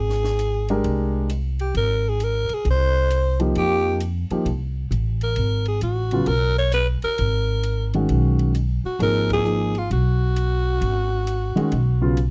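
A dry, close studio sound in a 1970s vein, with little reverb, frames this short, intense and searching slice of modal jazz, cut from a longer piece and swinging in 4/4 at 132 BPM. A growling alto saxophone leads up front, its raspy, breathy tone carrying vibrato and a slapback echo as it plays the melody between F4 and Db5. A woody, thumpy upright bass with gut strings sits prominently beneath it, plucked low between Ab1 and F2. A dark, mellow baby grand piano comes in at 0.7 seconds with accompaniment, while a compact cocktail drum kit, mixed well back, supplies hi-hat, punchy kick, high-tuned snare and dark ride cymbal. The harmony moves from Fm9 to Abm9 at 5.4 seconds, and the whole band hits an accent at 9.2 seconds.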